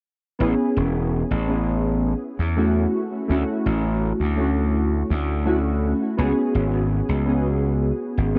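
Faded and woozy, this vaporwave fragment cut from a longer piece pairs warbling, detuned synth keys, nostalgic and full-bodied with lush chorus and tape echo, over a gritty, overdriven slap bass that sits punchy and up front, moving through Amaj7, Dmaj7 and C#7sus4 in a dark cassette-tape production washed in a huge ambient reverb.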